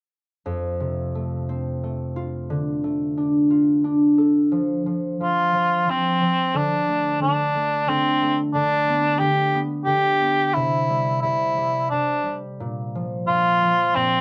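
A mellow cor anglais carries the melody in a classical style with light vibrato, its solo line sounding distant and roomy yet up front, entering at 5.2 seconds over a fingerpicked concert harp that opens alone from 0.5 seconds with ringing chords moving from F to D minor. This sleepy, innocent children's lullaby in F major sways in 3/4 at 89 BPM with a rubato feel, bathed in light reverb. The short excerpt, cut from a longer piece, drifts through D, G over D, C and B-flat harmonies before breaking off at 14.2 seconds.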